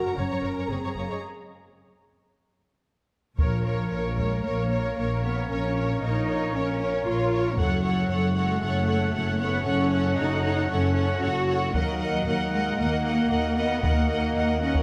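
A cinematic, epic orchestral film score at 115 BPM, relentless and dramatic, this excerpt opens with lush violins, viola with expressive portamento, woody double basses, cellos and a mellow French horn section in the background, pausing for a break from 1.2 to 3.4 seconds. At 3.4 seconds a rich, vibrato-laden violin melody arrives with the woodwind section's sustained chords, a dark solo tuba and a taiko ensemble struck with heavy sticks. The chords move from Gb through Bbm and Gbm to Ebm, all set in a moderate scoring-stage reverb.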